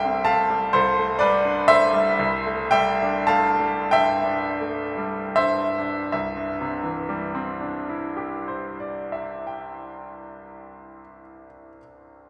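Dreamy and hazy, this short excerpt of impressionist classical solo piano drifts in 6/8 with a free, rubato feel, its dotted-quarter pulse wandering between 24 and 43 BPM and slowing down through the first 6.1 seconds. A bright concert grand carries the whole 12.3 seconds alone, ranging from C2 up to A5, its tone brilliant and polished with deep bass, long sustain and audible action noise that makes it feel intimate and up front. The harmony stays rooted in C major, moving from C6 through D7sus4/C and C69 before settling on Cadd9 at 6.1 seconds, where a second section begins. The tuning sits at A4 = 441 Hz. A wet church reverb with a 3.5-second decay surrounds the present piano, letting each chord hang in a spacious, cathedral-like glow as the passage is cut from a longer piece.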